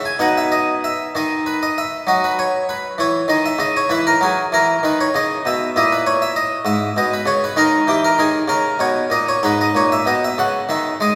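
A solo harpsichord carries this baroque-style suite movement, its plucked, brilliant Italian-style tone sitting up front and doubled by octave strings. The mood is flowing and grave, moving at 65 beats per minute in dotted quarters within 12/8, with a rubato feel that lets the pulse breathe. Across a range from G#2 to G#5, the harmony moves from B through A#m7b5 at 5.8 seconds and D#5 at 7.6 seconds before settling on G#m. A wet church reverb with a long 3.3-second decay surrounds the instrument, giving it the resonant air of a church or concert hall. This brief passage is cut from a longer piece, ending after 11.2 seconds.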